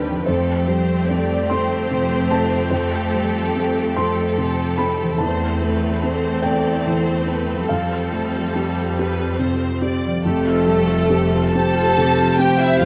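This cinematic excerpt opens with a felt-muted upright piano, soft and intimate with audible action noise, set alongside lush bowed strings. A clear, intense violin section carries the melody, a second, closer violin section adds an expressive line, violas fill in the accompaniment and rich cellos hold the bass. A very quiet concert harp joins almost at once with ringing, thumb-plucked arpeggios. The mood is moving and tender, in F major and 6/8 at a slow, rubato 48 BPM counted in dotted quarters, with the harmony passing from Fadd9 to Am/E and back. At 10.2 seconds an airy flute section, a vintage-toned French horn section on sustained chords and a smooth double bass section enter in the background, followed at 11.6 seconds by a distant, roomy solo clarinet. Close, detailed microphones capture the ensemble inside a moderate scoring-stage reverb.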